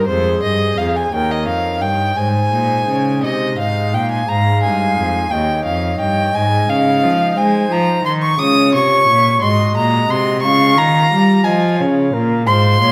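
Set in a wet recital hall reverb, this short cut from a longer baroque-style sonata movement is introspective and grave, in Ab major at 58 BPM counted in dotted quarters in 6/8. A pipe organ on thick foundation stops plays a romantic-voiced accompaniment beneath a clear, focused solo cello, bowed with vibrato and placed up front on the bass line. Above them a rich, smooth violin carries an even second line reaching up to Eb6, sitting more prominently than the melody. That melody belongs to a hollow concert flute, pure and tongued with vibrato, close-miked yet lying further back in the blend. All four parts sound together across the full 12.9 seconds. The harmony moves from F minor through Eb7 to Ab, and after a new section opens at 4.3 seconds it turns toward Db and Ab7 before settling on Db.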